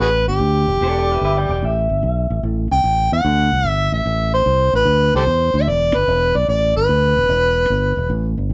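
A smoky, brooding blues fragment cut from a longer piece, played with a swung feel by a band sharing one room under light reverb. An overdriven harmonica carries the melody up front throughout, its amplified, gritty tone shaped by light vibrato, tongue slaps and scooped notes in a jazz-style solo. Beneath it, a fingered electric bass sits close and punchy, dark and round in its low register, anchoring the harmony as it moves from Em7 to Am and back. An electric guitar through a small old amp adds a brief second line from 0.8 to 2.4 seconds, sounding slightly broken-up, picked, compressed and lo-fi, bathed in spring reverb.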